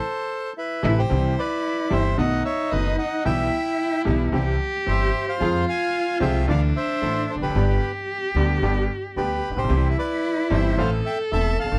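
A reedy, airy bandoneon opens this sultry, passionate tango alone before the band joins at 0.8 seconds during the opening accent, bringing a smooth, vibrato-laden bowed cello second line, a brilliant, slightly detuned upright piano with short sustain, very quiet bandoneon stabs and a dark, growly pizzicato upright bass up front, all moving rubato around 112 BPM in C major in a dry, close 1970s-style studio sound.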